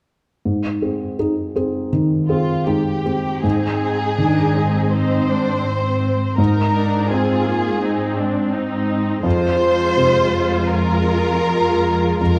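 Set in a dark, moderately reverberant scoring-stage sound, this tender and uplifting cinematic excerpt in Ab lydian drifts rubato around 82 BPM, opening at 0.5 s with a mellow felt-muted upright piano whose action noise is audible up close, joined at 2.3 s by a soft-attack violin section carrying an expressive, vibrato-rich second line and at 3.4 s by a rich, smooth-topped viola section and a focused, warm cello section on the bass, before the harmony moves from Ab to Fm at 9.2 s.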